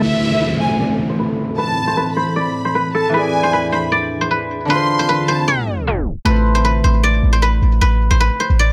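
A half-time 4/4 pulse at 154 BPM carries this menacing, melancholic hip hop piece in A harmonic minor, where a silvery, low-pass-filtered guzheng melody rings up front over a fingerpicked Celtic harp, a lush bowed violin section with delay, an ethereal, chorused FM pad and an electronic downlifter. It moves through Amadd9, E7 and Dm7 under a filter sweep until a tape stop at 5.5 s, and then a deep, boomy 808-style bass arrives at 6.3 s as the harmony returns to Amadd9.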